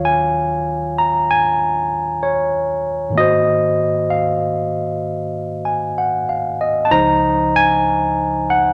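A romantic, intimate jazz ballad at a slow 64 BPM in 4/4 with a swing on the eighth notes, in this brief excerpt cut from a longer piece. A lone tine electric piano plays throughout, sounding bright and barky with a clean, direct, up-front presence, moving through Ebm7 and Ab7 before settling on Dbmaj9 at 6.9 seconds. A wet, large studio reverb surrounds the piano with a lingering 1.2-second tail.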